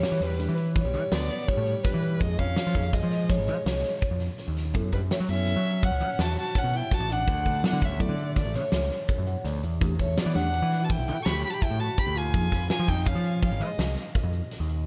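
Lightly reverberant, this tense, intricate progressive instrumental, cut from a longer piece, moves in 7/4 with a dark, woody bowed violin carrying the melody through tape echo over a clear, softly attacked alto saxophone second line, an up-front big rock drum kit with punchy kick and fat snare in a bright stone room, overdriven picked electric bass, a mellow tine electric piano through phaser that adds a brief fill at 9.1 seconds, and a grainy, very quiet egg shaker.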